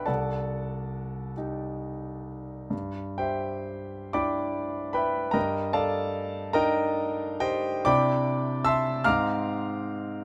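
Heard close and nearly dry, this recording places a concert grand piano up front, with the mechanical noise of its action audible beneath the notes. It is an impressionist classical piece for solo piano, serene and hazy, moving at a slow 46 BPM in 6/8 with uneven beats and a free, rubato feel. The instrument sounds clear and polished, with deep bass and long sustain, and its range stretches from C2 up to F#6. The harmony drifts from Cm6 to G6, then settles on Ebmaj7/G at 5.4 seconds before moving into Cmaj9 and finally Abadd9 at 9.1 seconds. This short passage, cut from a longer piece, lasts about 10.2 seconds and leaves an intimate, suspended impression.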